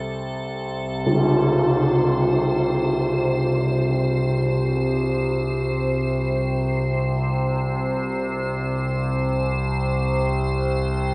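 Dark ambient drone in free time, ominous and dark, cut from a longer piece: a resonant, overtone-sweeping drone sits up front across the full 11.1 seconds with chorus, while an icy, crystalline glass pad with shimmer reverb floats above it on an A minor colour, and a single dark, close tam-tam strike at 1.1 seconds drops the harmony away into a vast, echoing cathedral space.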